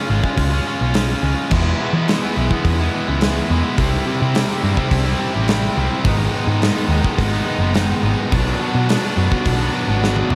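A straight 4/4 pulse at 106 BPM drives this brooding, angsty stretch of quiet-loud alternative rock, cut from a longer piece. A bright, overdriven electric guitar opens the riff up front, joined almost at once by a dark, round hollow-body short-scale bass and a big rock drum kit with a punchy kick, a medium-tuned snare, hi-hat, crash and toms ringing in a big room. At 1.5 seconds a second distorted guitar slips in behind, compressed and sitting in the background beneath the lead riff. The chords move from C# through E, C and G#m before landing on Bm, and a drum fill closes out the final moments from 10.0 seconds. Light reverb gives the mix a touch of space.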